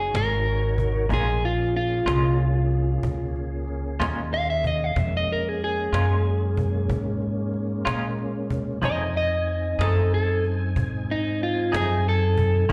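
An up-front electric guitar at the edge of break-up carries the melody with picked, slightly gritty notes, slapback echo and digital delay in this smoky, mournful slow blues in Bb minor at 62 BPM in 12/8, cut from a longer piece. Beneath it, a tonewheel organ holds clear, clean chords through chorus vibrato and a slow rotary speaker, a woody pizzicato upright bass sits up front, and a close cajon played with soft hands adds faint snares. At 1.1 seconds a clean, compressed, scooped electric guitar joins with fingered accompaniment through tremolo and slapback echo, as the harmony moves from Ebm7 to Bbm7 and on to F7#9, all heard as a live gig through the venue's PA with recital hall reverb.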